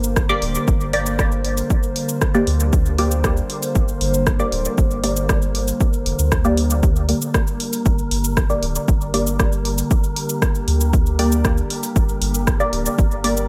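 A straight 4/4 pulse at 117 BPM drives this meditative, cavernous dub techno excerpt in G minor, where a punchy, up-front analog kick enters at 0.2 s beneath a drum machine's cabasa, hi-hat and rim click, a round, soft sub bass pumps below, a muted, detuned dub chord stab arrives at 0.3 s through phaser, filter sweep and dub echo, a warbling, nostalgic tape-like pad holds chorused, lo-fi chords that also pump, and an airy, breathy wind-like noise texture lingers darkly in the background, all sitting in light reverb.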